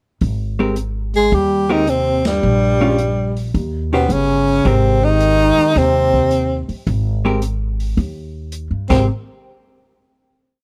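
This is a dry, close recording with a 1970s studio character and a light touch of reverb, capturing a relaxed, sophisticated small-group jazz piece in swing and bop style at 108 BPM in Ab major. Upright bass and drums open at 0.2 seconds: the pizzicato bass is woody, thumpy and up front in a two-feel, while the stick-played kit keeps time on the hi-hat with dark cymbals, a medium-tuned snare and a boomy kick in a small-room sound. A clean, compressed hollow-body electric guitar adds syncopated comping in three- and four-note chord shapes over Abmaj9, Bbm7 and Eb6. At 1.1 seconds, a trombone with a metal mute enters with a buzzy, breathy second line in octave doubling, and at 1.2 seconds a bright tenor saxophone with vibrato and a soft attack states a bebop-style theme that returns. The band hits an accent at 2.1 seconds, and the piece closes on a final hit.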